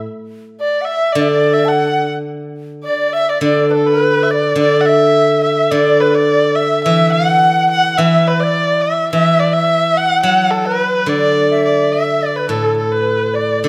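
A warm, smooth erhu carries the melody up front with vibrato and portamento, entering at 0.6 seconds over a silvery, ringing steel-string zither plucked with fingerpicks that opens the recording alone. A bright large dizi joins at the same moment as a second line, its bamboo tone airy and buzzing from the membrane, with soft attacks, vibrato, and a somewhat unsteady delivery. This pastoral, festive Chinese chamber ensemble piece moves at 106 BPM in 4/4 in a D gong mode, shifting into a new section at 4.6 seconds, and is heard in a moderate recital hall reverb as a cut from a longer work.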